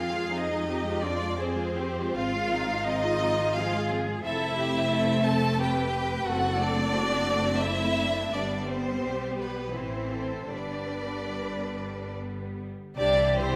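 Tender and warm, this slow romantic movement for string orchestra sways in a rubato 3/4 at 69-91 BPM. An expressive, soft-attacked violin section carries the melody over a smooth, up-front second violin line, a focused viola accompaniment, and a lush cello section gliding with portamento. A rich, close double bass section anchors the harmony as it moves from F minor toward a closing C major, all bathed in the wet reverb of a scoring stage.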